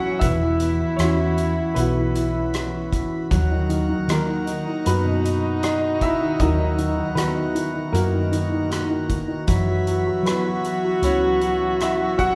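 Heard in the moderate reverb of a church or concert hall, this short passage cut from a longer piece is a tender, hopeful acoustic folk-pop ballad in B major, moving at a straight, unhurried 78 BPM in 4/4. An up-front grand piano carries the melody with a smooth, vintage tone, while a clear French horn sings a classical-style second line with vibrato. A reedy, nasal harmonium, close-miked and dry, holds breathing sustained chords, and a concert harp rings out fingerpicked arpeggios in the background. From 0.2 s a woody fretless electric bass adds a round, growly low end, and a loose indie drum kit sits distant and roomy, with a punchy kick, hi-hat and rim click under a rolled-off top. The harmony drifts from Esus2 to Bmaj7/D# and settles on F#7sus4 at 9.5 s.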